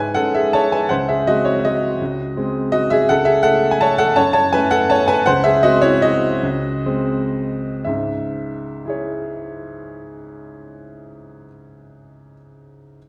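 In a lilting, rubato three-beat sway, this short classical piano waltz moves with a bittersweet, elegant air, cut from a longer piece. A solo upright piano with a woody, natural tone and long sustain sits up front, spanning low bass to the upper treble as it leans into a slowing from 4.7 to 7.9 seconds before a new passage begins. A lush concert hall reverb and a dark production wrap the playing in a soft glow.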